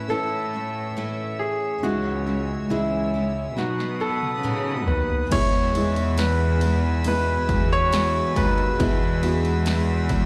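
A slow, straight 4/4 pulse at 69 BPM carries this tender, heartfelt pop ballad in E major, a short excerpt cut from a longer piece and heard as a live gig through a club's PA with light reverb. Up front, a clear concert grand piano with long sustain and audible action noise sings the melody, while a felt-muted upright piano, boxy and mellow, adds accompaniment in the background, both touched by slapback echo alongside a full-bodied picked steel-string acoustic guitar playing arpeggios. A rich cello section, bowed sul tasto with a soft attack, holds the bass close and up front, and a distant, floating string section sustains chords high above. A layered electronic drum kit with punchy kick and snare arrives at 3.6 seconds with a fill that runs into the second section at 5.3 seconds, where the harmony settles on E after moving through A, C#m and B. At 7.0 seconds a dark French horn section enters in the background with a second line, its classical ensemble tone adding weight beneath the melody.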